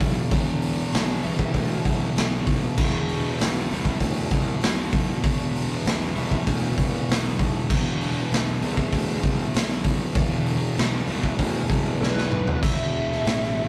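This excerpt of ominous, brooding stoner and doom metal opens with a double-tracked fuzz guitar riff, picked low and dark on an E5 chord, with a raw garage drum kit set up front beside it. The kit has a punchy kick, a medium-tuned snare, hi-hat, crash cymbal and toms, all saturated and gritty, with a rolled-off top and a bright stone room that pumps around the hits. Underneath, a fingered electric bass sits in the background, overdriven into a growly fuzz tone. At 12.0 seconds the drums play a fill as a distorted fuzz lead guitar with wah enters high above the riff, carrying a short melody into a new section. Light reverb and tube saturation give the whole thing the feel of a rough rehearsal-room recording.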